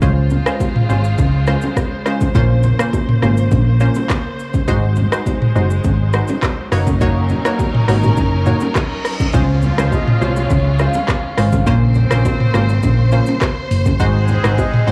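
A breezy, joyful afrobeats groove in Db major at 103 BPM opens with everything but the top layers already in motion. A round, detuned analog pluck with a filter sweep and chorus plays accompaniment over bowed studio strings holding sustained chords, while a dark, amped hollow-body electric bass sits up front. The electronic afro-pop kit pairs a deep kick and dark hats with handclaps, rim click, shaker and toms, and saturated congas and bongos sit in the background. A very quiet reverse cymbal and downlifter enter at 8.6 seconds, the cymbal leading into the second section at 9.3 seconds, where a distant, roomy jazz-style horn section with octave doubling adds a second line. A velvety, smooth synth lead with vibrato and chorus carries the melody from 9.9 seconds over the Dbmaj7, Bbmadd9 and Ab7 changes. The whole cut has a dry, gritty cassette-tape character in a small room, and it is cut from a longer piece.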